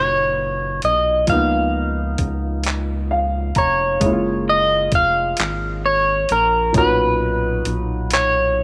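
Slow, intimate and sensual six-eight R&B at 44 BPM in F# major, with a twangy, slightly broken-up electric guitar carrying the melody up front through a slapback echo, a warm baby grand piano comping and adding a fill at 2.7 seconds, a rubbery, hollow square-wave bass holding down the dark low end, and a gritty, compressed sampler-style kit of thumpy kick, hi-hat and handclaps entering at 0.8 seconds, all in light reverb across the chords Bmaj7, C#13, F#maj9 and Bmaj9.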